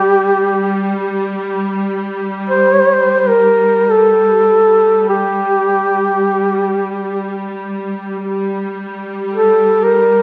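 Mournful and solemn, this short fragment of a Caucasian folk lament places a mellow, up-front solo duduk, its melody carried on vibrato and scooped notes with a smooth top, over a distant, rich drone from a bowed symphonic string section with light vibrato, both set in the lingering reverb of a church or concert hall.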